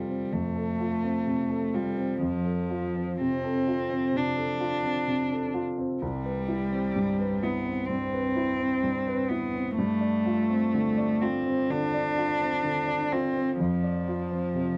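Intimate and hopeful, this 14.8-second fragment of neoclassical piano and strings moves at an unhurried, rubato 63 BPM in C major, with a polished, present grand piano spanning a broad register in accompaniment beneath a single up-front cello whose soft-attacked, airy sul tasto bowing and light vibrato carry a close, tender second line, all in a detailed, closely miked sound with light reverb as the harmony drifts from F through Cmaj7 and G7sus4 to Dm7/F.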